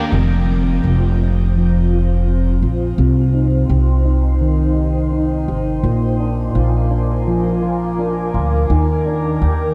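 A woody, pizzicato upright bass sits up front in this hazy, haunting dream pop excerpt at 84 BPM in F dorian, anchoring a slow progression from Fm through Cm and Bb7 to Ebmaj7. A clean, twangy electric guitar plays fingered arpeggios colored by ensemble chorus and digital delay, while a shimmering, ethereal pad sustains evolving chords with an octave-up shimmer, granular texture and phaser. The whole is framed by light reverb and digital ambience in a dark production.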